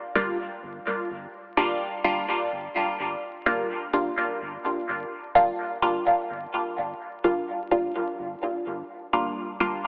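Hypnotic and meditative, this short dub techno passage, cut from a longer piece, moves at 127 BPM in a straight 4/4 and sits on a single G minor seventh chord throughout. Up front, a filtered dub chord stab carries the music, its muted, detuned sawtooth-and-square tone plucked by a filter with a fast attack and a decaying tail, colored by phaser and trailed by dub echo in the range from G3 to F4. Underneath, a soft dub sub bass holds a deep, round G1 in the background, a triangle-and-square wave with a fast attack that sustains beneath the stabs. Both parts enter at 0.2 seconds and stop at 9.8 seconds. The whole is bathed in a lush, wet hall reverb with a 2.5-second decay, while heavily compressed radio and telephone coloring and a layer of vinyl crackle give the sound a worn, distant character.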